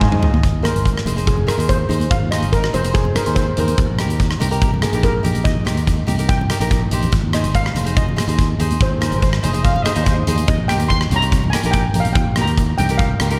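Opening on a punchy drum fill at 0.0 s with a brief, tight touch from the mellow horn section, this bouncy, sunny calypso excerpt at 143 BPM in Ab major moves into a shimmering, airy steel pan solo from 0.4 s, set over crisp picked cavaquinho with slapback echo, a direct, amped fingered electric bass, up-front big-room drums with a rolled-off top and very quiet high-tuned congas, with the smooth, lightly vibrato-tinged horns returning at 9.0 s in a light reverb.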